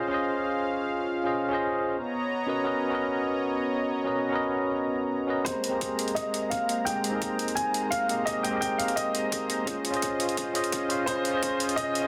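A straight 4/4 pulse at 171 BPM in Ab major drives this dreamy liquid drum and bass excerpt, where a clean tine electric piano with digital delay and a smooth, detuned sawtooth pad with chorus, tremolo and sidechain pumping open together over lush major-ninth chords; a brilliant baby grand piano melody with audible action noise and tape echo enters at 5.4 s, and a tight background kick and a gritty, pitched-up hi-hat join at 5.5 s for a build-up with filter sweeps on both pianos and a drum fill at 11.1 s, framed by moderate plate reverb and a dense, heavily limited modern master.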